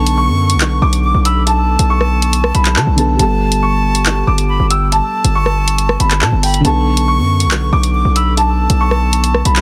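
A dense, heavily limited mix in a small room opens this tense, ominous drill excerpt at 139 BPM with a half-time feel in B minor, moving from Bm7 through Gadd9 and back. A boxy grand piano carries the high melody through digital delay, shadowed by an airy, reedy flute with vibrato, while a felt-muted upright piano adds soft, dark chords with audible action noise. Up front, a saturated, aggressive 808-style bass with a fast attack drives the low end, and an electronic drill kit with bright hats, handclaps and rim clicks enters at 0.1 seconds.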